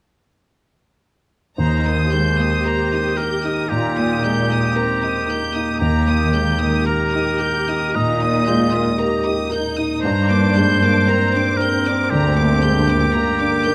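Cinematic and tender, this moving excerpt unfolds in a slow, rubato 4/4, with all six parts entering together at 1.6 seconds over a gentle shift from Eb to Gm at 10.0 seconds. A rich, lush symphonic violin section carries the melody high in its range with focused, bowed vibrato, while a clear, classical-style oboe sits up front as a solo second line beneath it. A baby grand piano with long sustain provides warm accompaniment, joined by a smooth, even viola section that stays in the background. The cello section supplies a distant, bowed bass line with vibrato and drops out at 13.0 seconds, just before the others finish at 13.7 seconds. A mellow, very quiet concert harp adds ringing thumb-plucked arpeggios, and the whole is captured with close, detailed microphones and light reverb.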